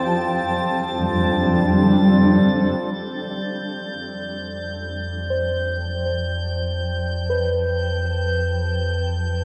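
A blurred, slowly evolving granular cloud pad sits up front in this serene ambient fragment in free time, shifting from Fmaj7 to Dm11/F as it fades in from 2.8 seconds, while muted, felt-like synth keys trace dark, intimate arpeggios through chorus and tape echo, a reedy, breathing pedal harmonium drones dry and close until 2.9 seconds, a glassy texture of drifting overtones hovers high above, and a deep, ominous rumbling drone joins at 4.4 seconds, all steeped in a vast reverb and the warbling pitch drift of worn cassette tape.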